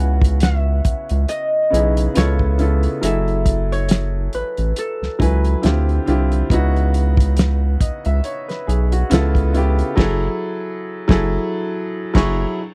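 A late-night, soulful neo-soul and R&B groove with a swung sixteenth feel, this short cut from a longer piece sets a mellow, ringing Celtic harp melody over a clear, woody upright piano that moves through lush chords from C#m11 to C#7alt, F#m9 and Dm11. A round, deep analog bass and a dry, lo-fi soul drum kit with muffled dark cymbals, a fat snare and a tight kick sit up front, while the harp drops out at 7.0 seconds. The band hits an accent from 10.0 seconds, and the upright piano closes with a fill at 11.7 seconds in a close, dry 1970s-style studio sound.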